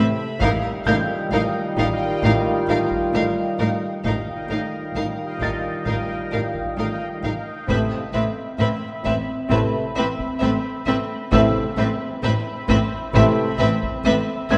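Mysterious and eerie, this cinematic suspense cue moves at a slow, straight four-beat pulse and is cut from a longer piece. Two rich chamber violin sections carry the melody and a second line above a focused viola section. One chamber cello section plays a riff with portamento and soft attacks, while another, distant and very quiet, holds a bass note alongside a close, expressive double bass section. Bright trombones and warm French horns sustain chords in the background until 13.5 s, and a bubbling, resonant sawtooth texture with random filter steps, chorus and its own reverb sustains chords with a slow attack and long release. A felt-muted upright piano adds a soft, intimate texture in the upper register, and a taiko ensemble played with heavy sticks enters at 0.4 s as the harmony shifts from D#add9/A to Amadd9 at 7.7 s. The ensemble sits in a wet scoring-stage reverb with a dark, rolled-off top.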